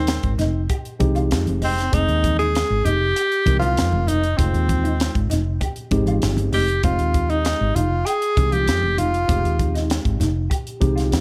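A clear, punchy tenor saxophone leads this driving, slick electric jazz fusion clip in F minor at 98 BPM, carrying a forceful solo melody with light vibrato up front until 9.9 seconds. Beneath it, a worn, slightly out-of-tune tine electric piano with phaser holds a Fm9 chord, a mellow guitar with ensemble chorus adds stabs in the background, and a woody, growly fretless bass with subtle chorus anchors the low end. A crisp, airy drum kit with a high-tuned snare and tight kick, joined by thick-skinned congas played with soft hands, keeps a straight 4/4 feel in a dry mix with little reverb.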